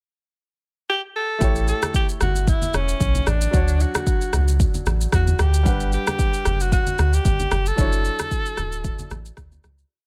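A breezy, sunny afrobeats groove at 113 BPM with a light 16th-note swing sets an electronic kit's soft deep kick, syncopated rim clicks and shaker against a bouncy, sliding sine-and-triangle sub bass doubled at the octave, while a breathy tenor saxophone with vibrato, scooped notes and tape echo spins jazzy call phrases from 0.9 seconds over held, spread chords from a warm baby grand piano and low-tuned, thick-skinned congas in the background, all in a dry room through a short verse of A7, Dmaj7 and Gmaj7 that fades out from 7.8 seconds.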